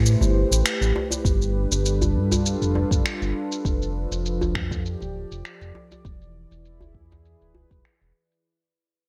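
Organic downtempo at 100 BPM in 4/4, with a light 54% swing on the sixteenths and tuning set to A4 = 441 Hz, this hypnotic, meditative fragment is cut from a longer piece and fades out across its full 8.4 seconds. Up front, a warm, detuned sawtooth analog pad holds slow-attack chords through chorus and sidechain pumping, moving from Am9 to G7, F69 and E7. Beside it sits a dark, smooth synth bass that blends sawtooth and square waves, with a fast attack, long sustain and portamento glides. An electronic shaker and finger snaps pass through low-pass filtering and gated reverb. A soft-handed, close and dry djembe lies in the background, and a deep electronic kick enters at 1.2 seconds. A moderate plate reverb and small-room ambience frame the bright, 1980s-style digital production.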